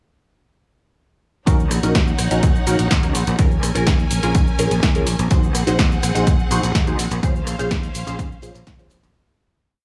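A tape-warm, punchy sound re-recorded in a small room opens this short, sensual and groovy filtered disco house piece in Eb dorian at 125 BPM, where the main parts arrive together at 1.5 seconds: an up-front four-on-the-floor electronic kick, programmed hats, rim, cabasa and snare backbeat from an analog drum machine, and a bright, growly fingered electric bass jumping octaves, with the hats, percussion and bass breathing with sidechain pumping. A dark, detuned sawtooth polysynth comps in dotted-rhythm chords through chorus and phaser over a clear, vibrato-rich studio string section holding sustained chords across Ebm7, Bbm7, Ab7 and Dbmaj7. Very quiet maracas and group handclaps join at 5.3 seconds before the whole piece fades out from 6.6 seconds.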